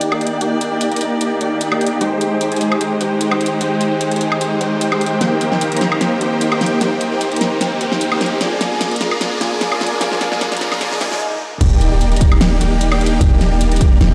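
This euphoric, bright future bass excerpt opens on huge, detuned supersaw chords with 12-bit sampler grit, a low-pass filter sweep and digital delay, pumping over smooth bowed symphonic strings and an up-front pop kit with a fat snare, metallic hats and woodblock, in Eb major at 150 BPM with a half-time, lightly swung feel. A drum fill and a very quiet riser drive the build-up through Ebmaj7, Abmaj7, Cm7 and Bb7 to a brief break and swell. At 11.6 seconds the drop lands with an impact, a layered electronic kick and a deep, boomy 808 bass on Eb1, all set in a lush hall reverb.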